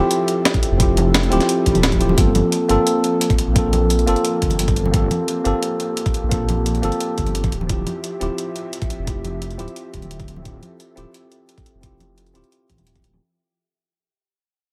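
Soulful and dreamy, this liquid drum and bass excerpt sets a worn, slightly out-of-tune tine electric piano with dub echo up front over a dark, breathy pad with chorus, gritty pitched-up breakbeat hi-hat and snare, a thumpy tape-warm kick, a menacing detuned saw bass that swells through its filter, ringing soft-handed congas in the background and a very quiet electronic swell at 1.6 seconds, moving from Dm11 to Gm11 and back under light reverb as the sound fades out from 2.2 seconds.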